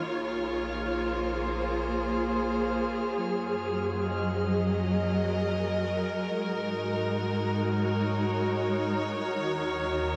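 Drenched in a huge, echoing reverb with an 8.0-second tail, this spacious, reflective ambient fragment moves at 77 BPM in Bb minor. An expressive bowed string section sits up front with vibrato and portamento, holding sustained chords from Bbm7 through Gb6 and Ab9sus4 to Ebm9 over a round, deep analog bass. In the background, a calm glass-harmonics texture with chorus and its own reverb hovers on drifting, glassy overtones.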